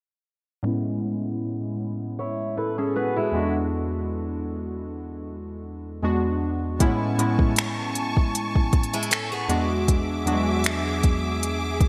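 Swung sixteenths in 4/4 carry this romantic, smooth contemporary R&B fragment, where round, detuned analog keys with chorus and a filter sweep provide accompaniment from 0.6 s, a bright, boxy picked acoustic guitar adds brief delayed arpeggios, and at 6.8 s lush bowed strings with vibrato and sidechain pumping arrive alongside an up-front electronic kit of finger snaps, crisp hats and a soft kick, overdriven and bathed in gated reverb, all over Amaj7 and E7 chords in a bright 1980s-style digital production with a small-room feel.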